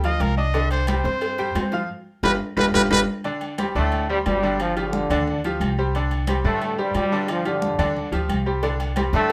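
Festive, sunny salsa at a brisk 178 BPM opens with a punchy, bright trumpet solo over brilliant, slightly worn concert grand piano, thumpy gut-string upright bass played pizzicato, thick-skinned congas, ringing agogo bells and timbales, a tight high cowbell and faint, distant claves, with a band accent at 1.9 seconds and a drum fill leading into the next section. From 3.8 seconds a tight, smooth-topped trombone section takes the melody up front with light vibrato, moving between Csus2 and G5 in a moderate studio room, and the cowbell returns at 8.6 seconds in this short cut from a longer piece.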